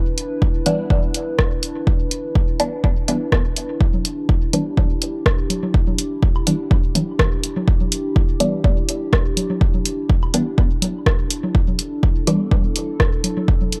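Hazy and nocturnal, this dub techno excerpt moves at 124 BPM in E minor with a light 16th-note swing, built on a single Em7 chord. A dark, detuned analog pad holds sustained chords under chorus, phaser and sidechain pumping, while a muted, nasal sawtooth chord stab sits up front with a filter sweep, phaser and dub echo. A punchy electronic kick and a tape-warm analog drum machine playing hi-hat and rim click drive the dry, gritty hardware sound, and congas and woodblock join at 3.9 seconds with their own pumping and dub echo.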